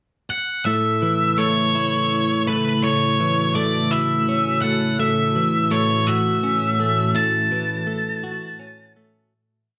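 A roomy large-studio reverb and a mellow top end frame this brief, soaring and euphoric post-rock piece in a slow 6/8 at 55 BPM, which opens on a pickup and settles onto an F#m7/A chord. A dark octave-fuzz lead guitar sits up front from 0.3 seconds with a distorted, motif-based melody in sentence-like phrases and a slapback echo, joined from 0.7 seconds by a clean, compressed twelve-string electric guitar picking warm arpeggios through spring reverb and its own slapback. From 1.5 seconds an ethereal, detuned pad adds full-bodied chords with a slow attack, ensemble chorus and built-in reverb in the background, before the whole piece fades out from 7.2 seconds.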